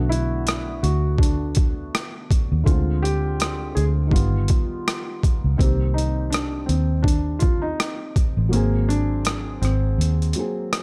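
The sound is dry and gritty, like a hardware recording with almost nothing in the way of reverb. This dreamy, nostalgic lo-fi hip hop fragment, cut from a longer piece, moves at 82 BPM in 4/4 with a swung 16th-note feel, drifting through Bm7, Dm7b5, Gaug7, Cm7 and Ab9. Two felt-muted upright pianos share the keyboard parts. One plays a soft, intimate melody through a low-pass filter and tape echo, with its action noise audible beneath thick felt, while the other plays a mellow accompaniment coloured by cassette tape and a low-pass filter. Up front sits a vintage muted fingered electric bass, dark, round and amped, which stops at 10.3 seconds. The boom bap sampler-style kit of hi-hat, thumpy kick and rim click is compressed, pitched down and overdriven, re-recorded in a large room, and its kick drops out at 8.5 seconds as the Ab9 arrives.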